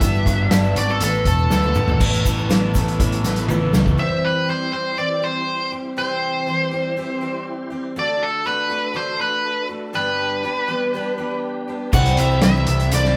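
A straight 4/4 pulse at 121 BPM drives this hopeful folk rock and heartland rock passage, cut from a longer piece and played live by a band in one stone-walled room. A nasal, dark lead guitar with a parked wah and overdrive carries the melody up front throughout, opening with a solo in the first 2 seconds, over a shimmering, octave-doubled twelve-string acoustic guitar picking full-bodied accompaniment and a very quiet tonewheel organ holding lightly overdriven chords through a slow rotary speaker. For the opening 4 seconds and again from 11.9 s, a double-tracked, scooped overdriven electric guitar riff joins with a growly, punchy picked bass, a grainy, very quiet egg shaker, and an up-front vintage drum kit with dark cymbals, a punchy kick and a pumping small-room sound, which plays fills at 1.5 and 3.5 seconds. In between, the lead guitar, twelve-string and organ carry the music on their own as the chords move from C through D and G. 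A wet stone room reverb gives the whole band a live, roomy feel.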